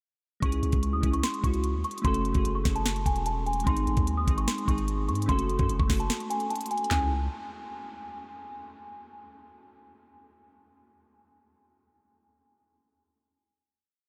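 A small celesta carries the melody up front, its bell-like, delicate tone softened by a low-pass filter and trailing into a diffuse ambient delay as it repeats like a sampled loop. Beneath it, glassy digital keys play dark, close-voiced rhythmic chords with a chorus sheen and a filter sweep, looping in the same sampled way to give this eerie yet hard-hitting trap beat its haunted atmosphere. A deep, long 808-style bass holds sustained sub notes that follow the kick and glide with pitch slides. The electronic trap kit sits forward in a half-time bounce, with a knocking kick, sharp snare, handclaps, toms and crisp sixteenth-note hats broken by fast hi-hat rolls. The parts enter together at 0.4 seconds, a brief break arrives at 6.1 seconds, and a final chord lands at 6.9 seconds, all within a dreamy mix soaked in huge, lingering reverb.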